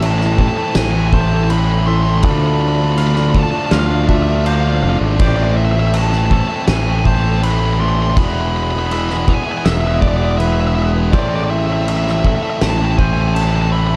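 Post-rock at 81 BPM in A harmonic minor, this brooding, melancholic excerpt from a longer piece moves through Am, Dm7 and E over about 14 seconds. A fuzzy, overdriven fingered bass sits up front beneath a bright, tight distorted guitar riff and a loose, distant-sounding acoustic kit with a fat snare, tight kick and dark cymbals. A dark, smooth overdriven lead guitar carries the melody through digital delay, while a twangy clean guitar picks arpeggios in the background with spring reverb and delay, and a very quiet granular pad adds blurred, warbling, detuned sustained chords under a dark, dry production.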